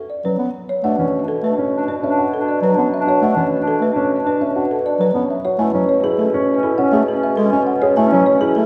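Minimalist classical pattern music in 4/4 at 101 BPM, this short excerpt carries a meditative, hypnotic mood in a straight, steady pulse. A folk marimba played with soft mallets opens at 0.0 seconds and carries the melody between G#4 and G#5, its hardwood bars sounding woody, rustic and round. Just after, a mellow bass clarinet sits close and punchy in the accompaniment, while a dark baby grand piano spins arpeggios with an intimate tone, short sustain and audible action noise. At 0.8 seconds a distant, dark clarinet adds a narrow second line between C#4 and D4, and a mellow bassoon holds a low B2 in the bass with light vibrato from further back in the room. The harmony rests on rootless E7sus2 voicings before shifting to Amaj7 over B at 5.6 seconds, all bathed in the long, wet reverb of a concert hall or church.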